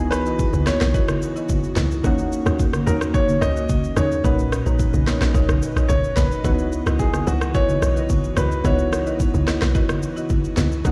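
A straight 4/4 groove at 109 BPM drives this deep, late-night amapiano excerpt in C# dorian, built on an up-front electronic drum kit whose deep kick, sharp snare, rim click and shaker carry a gritty vintage sampler edge. Beneath it, a tight, punchy log drum bass with a fast attack and decaying FM tone sits loudest in the mix, while low-tuned congas with a bright, thin-skinned sound join in the background at 0.5 seconds. A clear grand piano with long sustain and delay carries the melody until 9.2 seconds, over round, detuned analog keys with chorus and a filter sweep. An airy, breathy pad with a slow attack and long release holds sustained chords, and a woody marimba on padauk bars adds dark, smooth stabs with delay from 0.3 seconds. The harmony moves through C#m11, D#m7 and Bmaj9 before returning to C#m11, and the track sounds as if played on a big sound system in a bare room, with large studio reverb.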